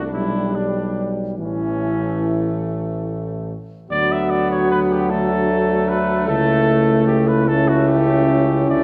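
This stately, noble brass quintet excerpt opens in a resonant recital hall, its 1.7-second reverb lending the ensemble a spacious, wet bloom. Cut from a longer classical piece in 6/8 with rubato phrasing, it moves slowly through two sections, the second beginning at 3.9 seconds. A dark, punchy trumpet with a vintage edge carries the melody, while a flugelhorn with light vibrato sings a distant second line beneath it. A French horn entering at 0.1 seconds and a close-miked euphonium with light vibrato fill in the accompaniment. A roomy tuba, also touched with light vibrato, anchors the bass and sits up front in the blend, and the harmony settles on a D chord before turning toward A7/C#.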